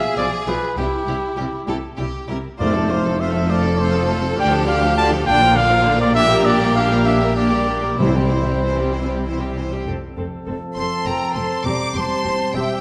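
A mellow, up-front trumpet opens this quick, cheerful classical-period movement with stabs, set against a focused second line from a rich-toned violin section. A moment later a clear, intense violin melody enters, reaching as high as D6, while distant violas, background cellos and double basses supply smooth, even accompaniment and bass, all bowed with vibrato. The music is in F major in 6/8 at 67 BPM (dotted quarters), played gracefully with rubato, and the harmony moves from a B diminished seventh through C, F, D minor and B-flat. Round timpani struck with soft mallets sound twice in the background during the opening section. At 9.9 seconds a dark, soft-attacked French horn section enters with sustained chords, and at 10.8 seconds an airy, bright silver flute and a roomy clarinet join with second lines, all set in a wet scoring-stage reverb as this extract from a longer piece breaks off.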